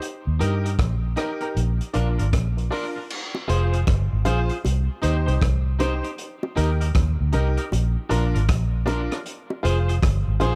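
Worn, woody upright piano stabs open this meditative roots reggae excerpt at 78 BPM, sounding intimate with audible action noise and a slightly detuned, long-sustaining tone, alongside a gritty, saturated breakbeat kit built from a punchy kick, rim click, hi-hat and dark crash cymbal. Almost at once a vintage foam-muted fingered electric bass settles in up front, round and amped, carrying the low end of the serious F dorian groove with a 16th-note swing. A bright, twangy picked electric guitar adds clean accompaniment, soaked in spring reverb and dub echo. The chords move from Eb to Bb, then cycle through Fm, Cm, Eb and Bb, and at 3.3 seconds tight, high-tuned bongos join, played with soft hands and sounding close and dry. The whole sits in a small room ambience, with the drums' rolled-off top keeping them dark and smooth beneath the brighter guitar.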